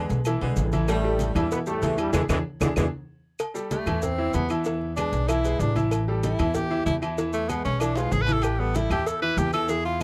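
A dry, close 1970s-style studio sound with light reverb frames this fiery, driving salsa cut from a longer piece, running at 190 BPM in 4/4 over chords centred on E7 and A5. Punchy trombone and edgy saxophone sections state the opening melody and second line, hitting a band accent before a drum fill and dropping out by 2.9 seconds, while a brilliant, short-sustain upright piano and a growly, thumpy pizzicato upright bass drive underneath from start to finish. Tucked behind are low-tuned congas, a tight cowbell, grainy maracas, ringing agogo bells and timbales, and woody claves, and at 3.7 seconds a breathy tenor saxophone with vibrato and tape echo takes an up-front solo.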